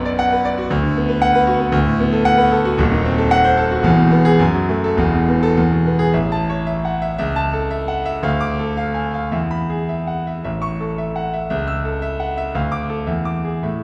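Set in a wet recital hall and heard from further back in the room, this excerpt presents a clear, smooth concert grand with a deep bass and a vintage character, playing alone across a range from D#1 to E6. It is a sparkling, heroic classical virtuoso study in A major and 2/4, moving at roughly 100-117 BPM with a flexible rubato feel. The opening passage winds through B minor harmony and a diminished chord toward E, and at 6.1 seconds a new section settles into A major, moving through D minor back to E7 as it is cut off at 13.8 seconds.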